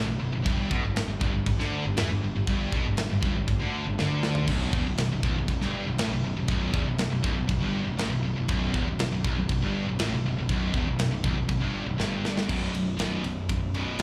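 A growly, overdriven fuzz bass sits up front beneath a stack of bright, picked high-gain guitar riffs, one with slapback echo and two scooped, including a very quiet double-tracked layer that drops out at 12.5 seconds, before a tight, saturated metal drum kit with a gritty, rolled-off top enters at 0.5 seconds and throws in a fill at 4.0 seconds, all captured as a live gig through the venue's PA with club reverb in this dark, heavy 120 BPM heavy metal excerpt moving from G5 through Emadd11/B to B5.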